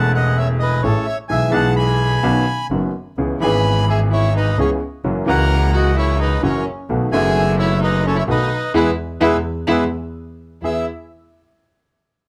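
A reedy, dark bandoneon sings the melody over clear, woody upright piano and a focused, bowed double bass in this elegant, nostalgic tango excerpt in E major at a rubato 129 BPM, with a warm, expressive violin adding a second line with vibrato and portamento from 3.4 seconds before the band strikes an accent at 8.7 seconds, all set in light reverb.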